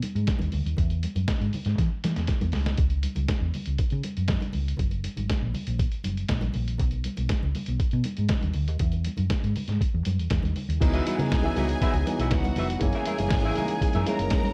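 A straight 120 BPM disco groove in C# dorian drives this glamorous excerpt from a longer piece, built on a muffled, pitched-down sampler-style drum kit with a thumpy kick and fat snare, a drum fill at 1.8 seconds, soft-handed congas in the background, and a round, punchy hollow-body fingered bass up front. At 10.8 seconds, over a C#m11 chord, a dark, mellow baby grand piano with audible action noise, a clean semi-hollow electric guitar with analog chorus, and a lush, distant symphonic string section with vibrato join in. Light reverb places the whole arrangement in a modest space.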